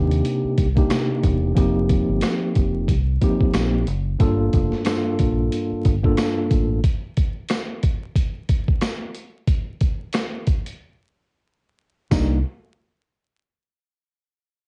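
A swung boom-bap groove at 91 BPM in 4/4 sets a moody, reflective hip-hop feel in C dorian, with a gritty, compressed sampler-style drum kit up front, built on a thumpy kick, a high-tuned snare, rim clicks and hi-hat, and a jingly tambourine tucked in the background from 0.9 seconds. A mellow, clean tine electric piano colored by cassette tape moves through Cm7, F7sus4 and Gm7 over a dark, round fingered dub bass with tube saturation, until both drop out at 6.8 seconds for a break carried by the drums and tambourine, then return briefly on Cm7 at 12.1 seconds. The dry home-cassette sound, with vinyl crackle and a dulled top end, gives this cut from a longer piece a lo-fi intimacy.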